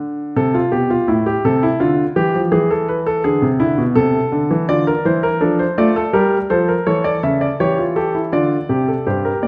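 In a straight 3/4 at 83 BPM, this short passage cut from a longer piece unfolds as a baroque-style three-part fugue for solo grand piano in D minor, tuned to A4 = 441 Hz. The mood is serious and solemn, with the harmony moving through Am, Dm, E7 and Am/C before turning to Gm and A7 and settling on Dm at 8.3 seconds. The piano spans G2 to E5 and sits up front, its tone warm, intimate and natural, with the mechanical noise of its action clearly audible. A wet recital hall reverb with a 1.4-second decay surrounds the instrument, giving the counterpoint a sense of space while keeping the playing close. The piano sounds from the start and continues through 9.5 seconds.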